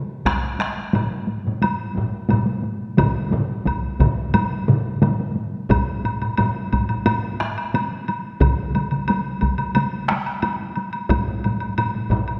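Ceremonial and powerful, this short cut from a longer piece of Japanese traditional taiko drumming moves at 89 BPM in a straight 4/4. Several taiko ensemble parts carry the performance, struck with heavy sticks, one close and dry, another set up front in a live room, and a third with a vintage, band-limited character. A fourth taiko layer played with hard sticks joins at 3.0 seconds and drops out at 10.2 seconds, thickening the middle of the passage. A woody woodblock, heard in a small room and sitting lower in the balance, runs alongside the drums for nearly the whole length. The music shifts into a second section at 5.7 seconds, and a concert hall reverb with a long tail gives the ensemble a resonant, spacious setting.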